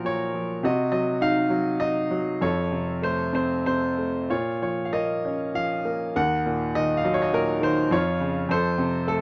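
A brilliant, up-front concert grand piano with deep bass plays a brooding, lyrical classical solo in a flexible, rubato 3/4, its harmonies drifting from Gbmaj7#11/Bb through Cdim, F, Bbm, Ebm and Db/F before settling on F at 8.5 seconds, all in a moderate studio reverb across this brief fragment of a longer piece.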